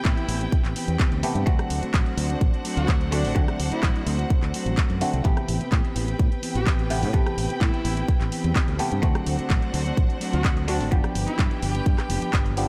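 Light digital reverb wraps this funky, sensual stretch of filtered disco house, cut from a longer piece, with sidechain pumping breathing through most of the parts. Up front, a tape-warm electronic kick sits in a small room, while a dry analog drum machine adds handclaps, rim clicks and hi-hats that pump with the sidechain. A dark, round fingered electric bass with tube saturation anchors the low end, and an overdriven muted clav, colored by a phaser, plays stringy, percussive accompaniment. A clean, mellow electric guitar riff and a distant, bowed violin section holding rich sustained chords fill the middle, as a clear horn section carries the melody in the background under a diffuse ambient delay. The harmony moves from Am9 to D7, back to Am9 and on to D7 again, reaching G7 at 10.9 seconds.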